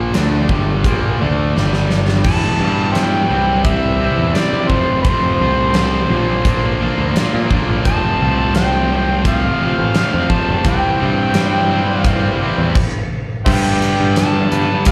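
Two bright, crunchy electric guitar riffs and a growling, overdriven electric bass open this sunny, driving classic rock excerpt at 86 BPM in a straight 4/4, with one guitar sitting in the background and the other compressed and distorted. A huge arena drum kit with a punchy kick, medium-tuned snare and bright cymbals sits up front and pumps the room, and a drum fill at 1.5 s brings in a gritty, amplified harmonica solo with light vibrato and tongue slaps over chords moving from Em through C, F and Bb. The band hits a stop at 12.8 s before landing on G, all heard as a live gig through the venue's PA with recital-hall reverb and small-room ambience.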